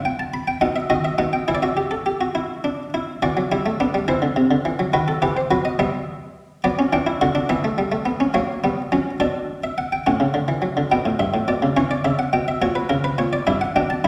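A muted, lute-like buff-stop harpsichord sits up front, playing alone through this short excerpt of a baroque-style three-part fugue in E minor, at 70 BPM in a straight 6/8. The mood is contemplative yet driving, with the opening idea returning at 10.1 seconds after a middle passage that turns toward B minor. The airy, plucked tone spans G2 to B5 and rings out in a reverberant recital hall.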